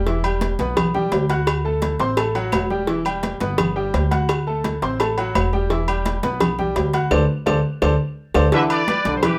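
A straight 4/4 salsa groove at 170 BPM in E minor drives this passionate, danceable fragment of a longer piece, with a brilliant upright piano and a dark, woody pizzicato upright bass up front over congas, a tight high-tuned cowbell, ringing agogo bells and timbales, and distant claves. The piano and bass alternate Em7 and D7 until a band accent on D5 at 7.1 seconds, after which a clear horn section with light vibrato takes the melody and a trombone section adds a second line from 8.5 seconds, all in a moderate studio reverb.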